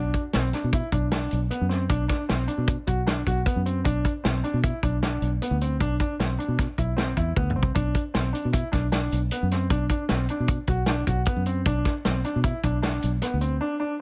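A clear concert grand piano opens with long-sustained arpeggios over a dark, round fingered electric bass, and a warm, mid-forward soul drum kit with a medium-tuned snare joins at once, setting up a driving, brooding progressive instrumental in 5/4 at 154 BPM. All three parts sit up front in light studio reverb while the harmony moves between D7 over B and B minor colours, with a drum fill around 7.4 seconds. The excerpt of a longer piece closes on a brief break at 13.6 seconds.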